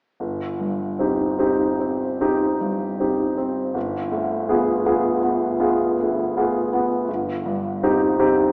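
A clear, polished grand piano carries this brief fragment of a romantic nocturne alone, playing from 0.2 to 8.5 seconds in a melancholic, mournful mood. Set in C minor and 9/8, it moves slowly at roughly 49-56 beats per minute in dotted quarters, with a free, rubato feel. The harmony rests on C minor over G, moves to a G7b9 chord at 3.8 seconds, and settles back onto C minor over G at 7.1 seconds. The piano's range reaches from deep G1 up to Ab4, its tone present and up front. Around it, a wet recital-hall reverb and a distant vantage point in the room give the sound a narrow, AM-radio cast, like a fragment cut from a longer nocturne.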